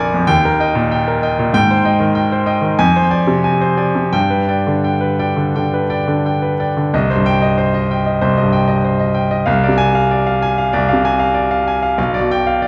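A wet recital-hall reverb surrounds a brilliant, up-front grand piano in this stormy, brooding fragment of a romantic character piece, played solo in C minor at a rubato 85-98 BPM in 4/4. Ranging from Bb1 to Ab5, the piano moves through Eb, Abmaj7, Dm7b5/F and G. A second section at 6.9 seconds turns to Cm and Dm7b5/C, and the fragment breaks off on G7/B at 12.0 seconds.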